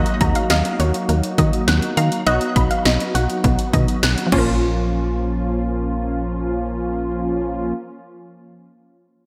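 A punchy analog drum machine sets a straight 4/4 pulse at 102 BPM, its kick and snare overdriven and drenched in gated reverb, with hi-hat and crash cymbal, until it drops out at 4.5 s. This cool, melancholic synth-pop fragment in Bb minor moves from Ebm to B to Bbm, carried by a solid FM bass with a dark, round low end. Up front, a funky polysynth comp built on detuned sawtooth and square waves lays down mellow chords through a chorus effect, while a soft, gentle pluck adds a second line with chorus and delay. In the background, a juicy, squelchy blip pluck spins resonant arpeggios across a broad range, also with chorus and delay, and it plays alone from 7.7 s to the end at 8.5 s. The bright, 1980s-style digital production sits in a moderate plate reverb, giving this cut from a longer piece a glossy, spacious sheen.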